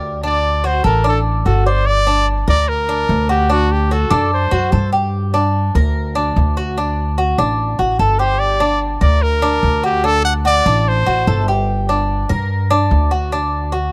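Nostalgic and sultry, this brief latin excerpt in the Cuban son and guajira vein sets a mellow, metallic picked tres arpeggiating over a woody, growly pizzicato upright bass, while a clear trumpet with light vibrato carries the melody up front in two phrases, first entering at 0.3 seconds and returning at 8.0 seconds, all heard through close, detailed microphones with little reverb as the harmony swings between G minor and D.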